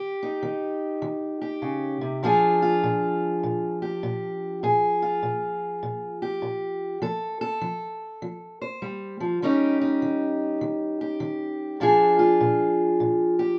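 Swung eighth notes in 4/4 give this short blues a relaxed, loping gait from the first beat. A single fingerpicked steel-string acoustic guitar carries the whole passage alone, ranging from its low bass strings up to the middle of its treble register. The instrument has a dark, boxy parlour character and sits up front in the mix, framed by a moderate studio reverb. The harmony moves from Eb7 to Bb7, then up to F at 7.0 seconds before returning through Eb7 and settling back on Bb7 at 11.8 seconds. The mood is soulful and laid-back, and the fragment ends at 13.6 seconds, cut from a longer piece.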